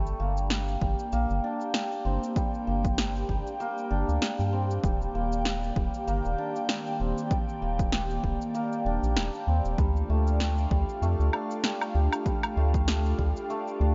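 Riding a lightly swung 97 BPM 4/4 groove of punchy, up-front electronic kick, snare, cabasa and woodblock, this mystical, meditative organic downtempo cut in G minor pairs shimmering hammered santur arpeggios trailed by delay with a deep, round analog bass and an airy, breathy pad whose sustained chords pump under sidechain and drift through chorus and phaser, moving from Gm to Ebmaj7 at 4.8 seconds and Dm at 9.8 seconds, all set in light reverb with a dark, rolled-off top end.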